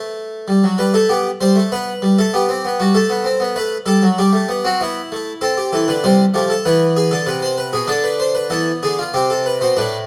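A steady, straight 4/4 pulse at 97 BPM drives this short excerpt from a baroque-style three-part fugue in A minor, serious and purposeful in mood, tuned slightly below modern pitch at A4 = 438 Hz. A solo French-style harpsichord with three sets of strings plays from A2 to C5, its plucked tone full, brilliant and airy, placed up front by close, detailed microphones within a moderate recital-hall reverb. The harmony moves through Am13/F#, B5, Em/G and E7/D before settling back on Am at 9.1 seconds.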